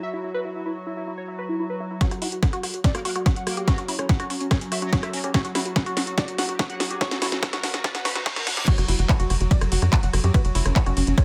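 Psychedelic and hypnotic, this psychedelic trance excerpt at 144 BPM opens on a thick, detuned unison lead with phaser and dub echo over an evolving, warbling wavetable pad. At 2.0 s a punchy up-front kick and a techno kit with a cracking snare and metallic hats arrive alongside a woody, wave-folded pluck riff in the background. A brief aggressive wobble bass follows at 2.9 s, and a very quiet riser and reverse cymbal come in from 5.5 s late in the build-up, before the drop at 8.7 s brings in a tight, nasal sawtooth sequencer bass.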